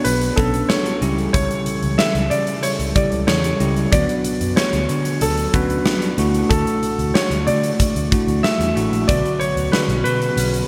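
A 1980s-style pop excerpt in B minor at 93 BPM opens with an intimate concert grand carrying the melody through digital delay, over bell-like tine electric piano chords, dark, round synth brass stabs with chorus and delay, and a huge, punchy arena drum kit drenched in gated reverb. A foam-muted picked electric bass joins at 0.1 s, and at 9.1 s a bright, compressed clean electric guitar riff with ensemble chorus slips in quietly behind the band. The mood is nostalgic yet urgent, moving from Bmadd9 through C#dim and Dadd9 inside a lush hall and bright digital sheen.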